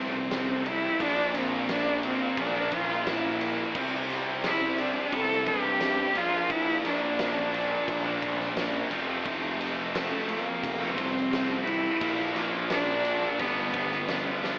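Quiet-loud alternative rock at 87 BPM in 4/4, this bittersweet, anthemic passage cut from a longer piece puts a biting, intense solo cello up front, its bowed melody rich with vibrato over chords moving from F through Bb and C. Behind it, a double-tracked high-gain guitar and a thick fuzz guitar drive picked riffs, while a growly overdriven electric bass anchors the low end and a huge arena drum kit, with punchy kick, fat snare and bright cymbals, enters at 0.3 seconds and lands a fill at 14.4 seconds. Light studio reverb and an AM-radio sound color the whole mix.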